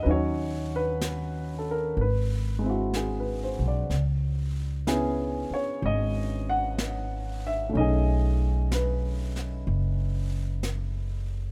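A slow 62 BPM swing in 4/4 carries this wistful, intimate jazz ballad excerpt, cut from a longer piece, with a baby grand piano comping up front in a natural tone over the chords D#m7, G#7alt, C#m7 and B13. A woody, growly pizzicato upright bass on steel strings sits close and warm beneath it, while a jazz kit played with brushes adds an airy, polished touch on its medium-tuned snare and hi-hat. All three parts play throughout the 11.5 seconds, heard in a rough home-demo mix with studio ambience.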